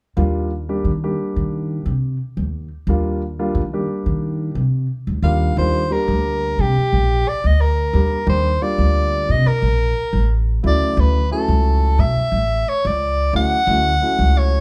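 Electric jazz fusion at 89 BPM in a straight 4/4, bright and soaring, with a warm grand piano and a woody, dark pizzicato upright bass from the start, the bass sitting up front and carrying more weight than the piano. At 5.2 seconds a soprano saxophone enters with a smooth-topped solo line in jazz style, up front over the band, as the harmony moves from Ebmaj9 to Dmaj9 at 10.6 seconds. The group plays live in one room with light reverb, and the clip is cut from a longer piece.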